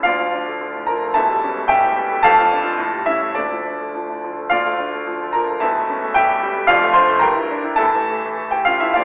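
This classical virtuoso piano study is passionate and stormy, taken from a longer piece and set in a pliant, rubato 2/4. A solo concert grand carries everything from 0.0 to 9.0 s, its clear, open tone reaching down to a deep bass and sitting up front. The same phrase is stated twice over chords such as Dm, A7/E and Em7b5/G, and the sound is bathed in a wet scoring-stage reverb heard from further back, with a thin telephone-like colour.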